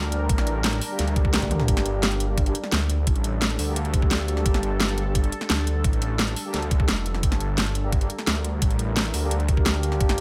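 Lightly reverberant digital ambience frames this mechanical, dark technical drum and bass excerpt in G minor at 173 BPM, where a detuned saw bass, thick, overdriven and up front, pumps under sidechain beneath a deep, moody ambient pad of sustained chorused chords. A layered dubstep kit with a huge snare, metallic hats and toms sits forward in a small room alongside a knocking, tape-tinged electronic kick, with a drum fill at 1.4 seconds. From 0.9 seconds, a mellow, distant brass ensemble adds tight classical-style stabs trailed by dub echo.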